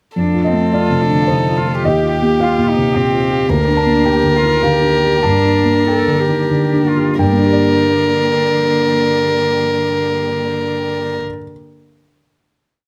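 Fragile and melancholic, this brief neoclassical piece in a rubato 3/4 sets a soft, felt-muted upright piano, intimate with audible action noise and rocking broken chords, beneath a pure, floating sul tasto violin melody, while a dark cello with airy bow and vibrato adds a counter-melody that answers at phrase ends, a very quiet chamber string section holds sustained chords, the theme slows from 2.7 to 7.2 seconds before settling onto a final chord, and close, detailed microphones catch it all in light reverb.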